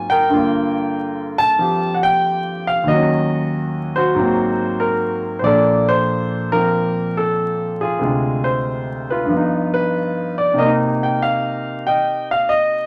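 Swinging and warm, this brief solo jazz fragment, cut from a longer piece, features a lone concert grand piano sitting up front with a natural tone and deep bass, moving through chords such as Gm7, Ab9 and Bbmaj7 before reaching Cm7 at 10.6 seconds, heard in a moderate studio reverb beneath a layer of vinyl crackle.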